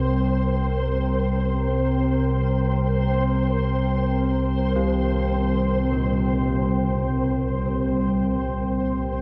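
Swimming in a cavernous cathedral reverb, this brief dark ambient drone fragment in free time, tuned to A4 = 439 Hz, sets an ominous mood as a deep, rumbling, nasal drone and a moody, chorused, detuned pad hold sustained tones up front, a grainy, flickering granular texture hovers on a high C, and bronze carillon bells ring out bright arpeggios in the background through a diffuse ambient delay.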